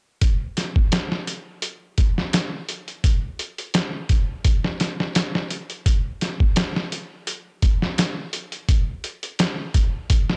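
A compressed, pitched-down trip hop sampler drum kit of thumpy kick, medium-tuned snare and hi-hat sits up front from 0.2 to 10.4 seconds, its muffled, tape-warm tone roughened by vintage 12-bit grit, pacing a hypnotic, dark groove at 85 BPM in 4/4 with a light swing on the 16ths, all captured in a dry, gritty recording cut from a longer piece.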